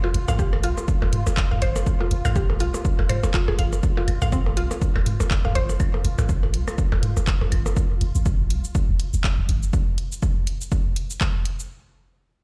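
Minimal techno with a sparse, cool mood, this drop is cut from a longer piece and rides a swung 4/4 groove over one sustained minor chord. A woody, round mallet-like FM pluck plays a bright, percussive riff colored by chorus, phaser, tape echo and sidechain pumping, and it stops at 5.6 seconds. Beneath it, a swarming, detuned drone hovers low in the mix with its own reverb and pumping, while electronic percussion blips, toms and claves scatter through digital delay; both drop out before 8 seconds. A deep sine sub bass with a pitch-drop attack pumps up front until 9.7 seconds. A punchy, tape-warm electronic kick runs until 11.3 seconds, and a layered house kit with handclaps, shaker and hi-hats carries on to the end at 11.7 seconds. The mix is mostly dry, heard as if played through a big sound system in a bare stone room.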